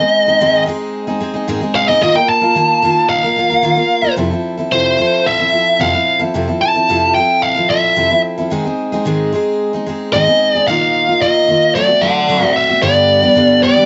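Warm and open-road in mood, this short rock fragment opens with a biting, overdriven electric lead guitar soloing up front through the first 4.2 seconds, carrying the melody over chords that move from Ab to Ebsus2 and on through Fmaj7, D7 and G. Beneath it, a picked steel-string acoustic guitar with bright, full-bodied fresh strings holds the accompaniment from start to finish. The home cassette recording has a dull, rolled-off top end and a touch of light studio reverb.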